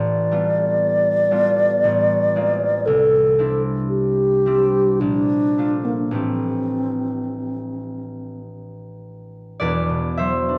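Mysterious and wistful, this fragment of an impressionist classical duo drifts in a rubato 3/4 at 50-62 BPM in A minor, with colorful chords such as G9/A, Cadd9 and Bbmaj7 settling onto Em9 at 9.6 seconds. Up front, a mellow, hollow alto flute carries the airy, tongued melody with vibrato until 8.4 seconds, while a concert harp, also close and warm, supplies fingerpicked, ringing accompaniment that continues alone until 10.6 seconds. A moderate recital hall reverb surrounds the duo, and the sound of worn old cassette tape adds a warbly pitch drift.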